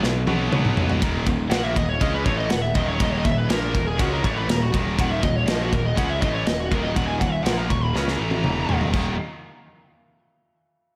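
A straight 4/4 heavy metal pulse drives this aggressive, epic clip: an up-front acoustic drum kit with a punchy kick and medium-tuned snare opens with a fill, two bright high-gain rhythm guitars (one scooped) play riffs with slapback echo in the background over a growly fuzz bass, and a distorted lead guitar solos from 1.5 s to 8.8 s, the whole mix set in a lush hall reverb for a big arena sound.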